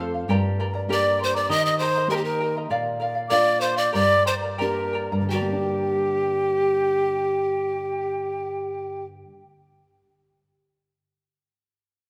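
A straight 2/4 pulse at 80-100 BPM, easing back between 2.7 and 5.3 seconds, carries this festive yet melancholic Andean folk excerpt in G minor: an up-front, close-miked pan flute with a bright, crisp, chiffy attack and a slightly unsteady straight tone leads the melody, a mellow, airy quena with vibrato adds a higher second line, a shimmering, fingerpicked charango with double strings accompanies, and a dark, classical nylon-string guitar with audible finger squeak fills the low end, as the ensemble moves through Gm, Eb and Bb in a moderate concert-hall reverb.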